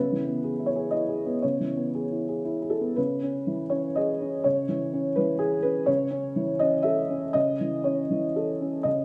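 Neoclassical minimalist piano in C# minor and 3/4, drifting with rubato at 115-128 BPM, this wistful, melancholic excerpt features a solo felt-muted upright piano, soft, dark and boxy yet intimate and up front, ranging from C#3 to E5 over a C#m7 harmony that shifts to A/C# at 5.9 seconds, all set in a moderate recital-hall reverb and tuned to A4 = 438 Hz.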